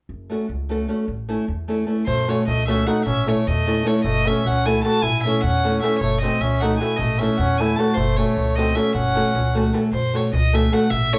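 A woody, growly pizzicato upright bass opens this restless, virtuosic Balkan wedding-band piece in 5/8, joined at once by bright, fingerpicked nylon-string guitar over alternating F#m and A chords; at 2.1 s a pure, floating bowed violin takes the melody up front, while a mellow, close-miked trumpet with light vibrato carries a second line and a crisp, vintage metal-shell darbuka played with soft hands adds a fill near 5.2 s, the band playing live together in a large studio room with moderate reverb.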